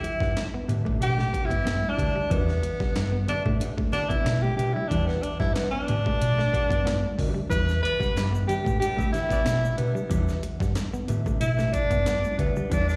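A straight 4/4 funk groove at 92 BPM in E minor rides on an up-front, gritty breakbeat sampler-style kit with a thumpy kick and high-tuned snare, anchored by a dark, round hollow-body short-scale fingered bass entering at 0.2 s over a steady Em7, while ringing, high-tuned congas, a clean semi-hollow guitar riff and a mellow electric guitar with spring reverb sit in the background. Up front, a jazz-style tenor saxophone solos throughout with light vibrato and a soft attack, its tone distant and roomy with slapback echo, and a smooth, tight horn section with octave doubling briefly adds a second line from 7.8 to 9.4 s. A grainy tube shaker joins at 7.5 s, and the whole cool, funky cut is heard as a live gig through the venue's PA with recital hall reverb.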